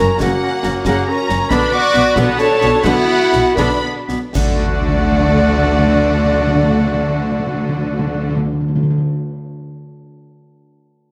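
In a 6/8 that slows from 0.9 to 4.4 seconds, this triumphant, soaring excerpt of heroic adventure film score sets a lush, vibrato-rich violin melody over a second violin line, pure silver flute, clear oboe and bright, close clarinet, with very quiet viola accompaniment, dark sustained French horn chords, mellow trumpet stabs, a bowed cello and double bass foundation, close, dry snare, bass drum and bright clash cymbals that stop at 4.7 seconds, and hard-mallet timpani entering at 4.4 seconds as the harmony arrives on D, all in a moderate scoring-stage reverb.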